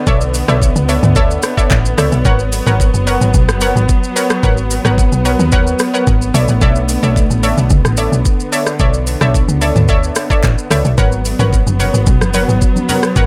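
Amapiano at 110 BPM in a straight 4/4, this short cut from a longer piece feels deep and hypnotic, moving between Bm11 and G#m11 chords. A woody log drum bass sits up front with a punchy, fast-attack FM tone and a noise layer, decaying into a mellow body. The smooth R&B drum kit is electronic and produced, with a knocking kick, metallic hi-hats, handclaps, rim clicks, shaker and toms placed prominently in the mix. Above it, a studio string section holds sustained chords with expressive vibrato and portamento, while an analog pluck fires bright, detuned stabs colored by chorus and digital delay. Ringing, medium-tuned congas appear in the background from 11.4 to 13.0 seconds, and the overall sound is dry with little reverb.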